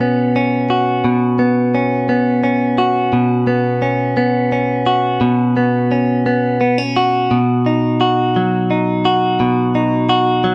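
A bright, twangy clean electric guitar, recorded direct and compressed, sits up front with light reverb, taking a solo in a swaying, romantic pop piece in 6/8 at 58 BPM, moving from a Bsus2 chord to a plain B at 7.3 seconds within a short cut from a longer piece.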